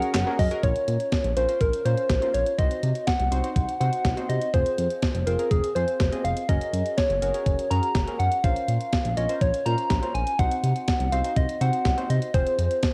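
Melancholic yet driving, this synth-pop excerpt moves at 123 BPM in Bb minor, cycling through Gbadd9, Bbmadd9, Cdim and Fm chords. Up front, a gentle, round FM synth lead with a warbling, vintage character carries the melody through chorus and tremolo, while warm analog keys with a filter sweep supply decaying chords, and a smooth, dark sawtooth bass with tube saturation enters at 0.1 seconds. A clean 12-bit drum machine drives it all with a thumpy kick, medium-tuned snare, hi-hat and handclaps, re-recorded in a large room, and the whole piece carries the character of a home cassette recording with digital ambience.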